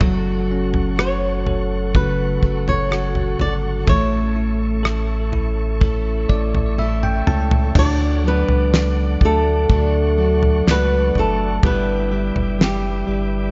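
An up-front flamenco guitar with fresh strings, fingerpicked, carries the melody from 1.0 s in this heartfelt, hopeful pop ballad, over a bell-like tine electric piano and a full-bodied jumbo acoustic guitar picking arpeggios in the background, both sharing the lead's dub echo, while a clear tonewheel organ holds sustained chords through a fast rotary speaker, a round, deep sub bass sits forward, and a dry, damped 70s drum kit with a fat snare and tight kick plays a fill at 6.8 s before stopping at 12.8 s, all within an echo-heavy mix with light reverb.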